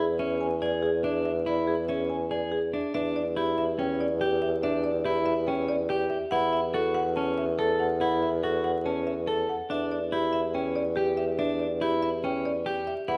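Wrapped in vinyl crackle and a moderate recital-hall reverb, this urgent yet meditative snippet of minimalist classical pattern music, cut from a longer piece, sets a woody, percussive marimba melody over clean, picked electric guitar arpeggios, while an up-front bassoon holds a dark, vibrato-laden E2 bass beneath them all the way through.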